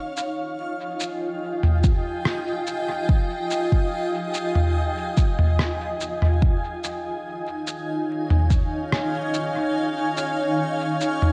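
Hazy and meditative, this ambient dub excerpt drifts on a cloudy, detuned granular pad that holds Fm9 and then shifts to Eb9sus4 at 6.4 seconds, while a muffled, pitched-down sampler-style kit of rim click, shaker and toms sits up front, a deep, tape-tinged electronic kick enters at 1.8 seconds and drops away at 8.7, and an echo-chamber reverb and vinyl crackle give the whole a dusty haze.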